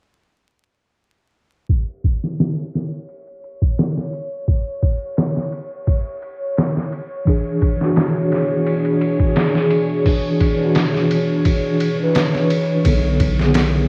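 Smoky and cinematic, this trip hop excerpt in a straight 4/4 opens with a gritty, pitched-down sampler drum kit up front, its thumpy kick, snare, hi-hat and ride all muffled by low-pass filtering under a filter sweep that runs from 1.7 to 12.9 seconds. A tense, nasal bowed-like drone with vibrato joins at 3.1 seconds, followed at 7.3 seconds by a mellow tine electric piano carrying tremolo, 12-bit grit and tape echo on an E7/B chord, and from 8.1 seconds a detuned, warbling tape-like pad adds chorus-soaked sustained chords. At 12.9 seconds the harmony shifts to Bm7 as a round, deep analog bass enters, all of it wrapped in cassette tape warmth, vinyl crackle and light digital reverb.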